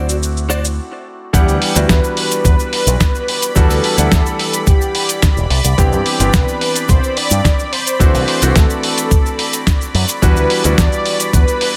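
Over a straight groove in 4/4, this sleek, groovy nu-disco excerpt opens with a dusty soul sampler-style kit of hi-hat, shaker and a medium-tuned snare, gritty and tape-warm, with a compressed, saturated cabasa sitting in the background. A clean, direct-recorded electric guitar riff flashes only until 0.6 s with ensemble chorus and dub echo, and a short break from 0.8 s gives way to the drop at 1.3 s, where a thumpy, up-front electronic kick arrives. A bright picked electric bass with an envelope filter drives the low end, while a clear, intimate concert grand piano with audible action noise and long sustain plays accompaniment, its sidechain pumping shared by a lush, detuned sawtooth pad holding slow-attack chords with chorus. On top, a thick, bold unison lead with a sub octave and vibrato carries a mellow melody through dub echo. The harmony moves from D7 into Em9, then Cmaj9 and D7 before returning to Em9, all in a dry mix with little reverb.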